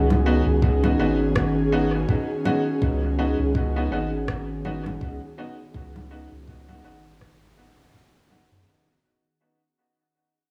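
An airy, breathy pad with chorus sits up front, holding a sustained Db9sus4 chord in this peaceful, hazy ambient dub fragment, which fades out across its full 8.7 seconds as if cut from a longer piece. Beneath it a round, deep analog bass anchors the low end, while electronic congas and rim click trailing dub echo enter almost at once, joined by a soft, tape-toned electronic kick at 0.6 seconds. A bright, worn upright piano adds woody, slightly detuned stabs through a low-pass filter and dub echo, all set in light reverb with a gentle swung feel.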